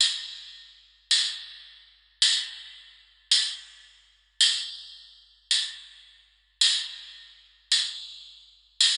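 A sunny, carefree pop fragment at 109 BPM in 4/4, carried by a tambourine alone, its 16ths swung at 60%. The tambourine sits up front with a jingly, vintage, band-limited acoustic tone, bathed in a plate reverb with a 2.5-second tail. The dreamy, reverb-soaked mix holds nothing above 10.8 kHz and carries a faint mains hum.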